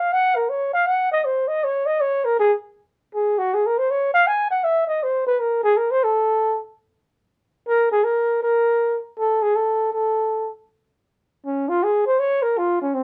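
Lightly reverberant and intimate, this swinging, cool jazz excerpt features a lone breathy flugelhorn, mellow and whispered with light vibrato, soft attacks and scooped notes, playing up front through the full 13.0 seconds, with its solo moving into a new section at 10.7 seconds.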